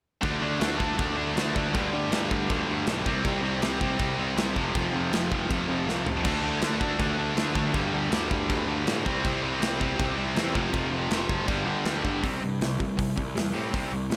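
The cranked stack guitar drives this energetic, rebellious punk rock excerpt, its bright, overdriven, double-tracked riff sitting up front alongside a heavy high-gain guitar whose distorted, picked attack doubles the charge. At 160 BPM in a straight 4/4, the two guitars run through a churning cycle of power chords built on D, G, C and F. A fuzz-laden picked electric bass adds a growly, direct-and-amped low end beneath them. The big rock drum kit has a dark, smooth big-room sound, with a punchy kick, a medium-tuned snare, hi-hat, crash and toms, and it drops in a quick fill at 5.9 seconds. At 12.2 seconds the high-gain guitar stops, and the cranked guitar, bass and drums carry a brief new section on C5 to the cut at 14.2 seconds, all under a light reverb.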